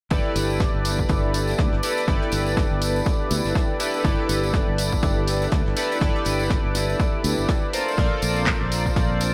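A glossy, up-front chorused polysynth plays stabs with digital delay over a growly fingered electric bass, a punchy electronic kick, silky background string-machine chords, a dark, damped 70s kit and analog drum-machine handclaps and hi-hats, and a jingly, distant tambourine in this relaxed, sunny deep house excerpt with a bright 1980s-style digital sheen, sidechain pumping on the synths and hats, and a shift from G69 to Bbmaj9 at 7.7 seconds.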